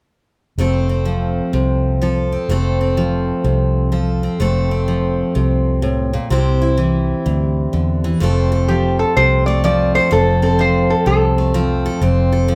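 A bright, full-bodied jumbo acoustic guitar picks an easygoing swung accompaniment alongside a dark, round, foam-muted vintage electric bass, setting a nostalgic honky-tonk and classic country mood in this cut from a longer piece. At 8.7 s a metallic, nasal lap resonator guitar steps up front, played with fingerpicks and a steel bar for a short slide solo that runs to 11.8 s, while the acoustic guitar's finger squeaks and light reverb add a homey, lived-in touch.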